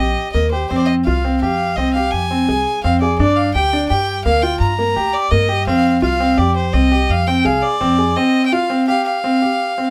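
Hypnotic and urgent, this short cut from a longer contemporary chamber piece moves in an uneven seven-beat metre. A biting, nasal solo violin carries the melody with light vibrato and an airy bow. A clear, intimate baby grand piano spins arpeggios with audible action noise and long sustain. A woody, dark pizzicato upright bass anchors the low end until it drops out at 8.1 seconds, all heard up front in a moderate studio reverb.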